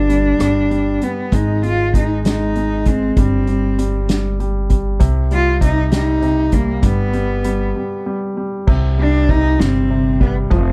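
In a six-eight pulse, this dramatic, melancholic pop ballad fragment is carried by a single bowed cello, played sul tasto with light vibrato and a soft attack that sounds intimate and close. A polished, present baby grand piano accompanies it, while a woody, thumpy upright bass on gut strings is plucked up front. A distant, roomy drum kit played with soft mallets on drums and cymbals adds a punchy kick, with a break from 7.8 to 8.7 seconds before a new section begins, all in a dry sound with little reverb.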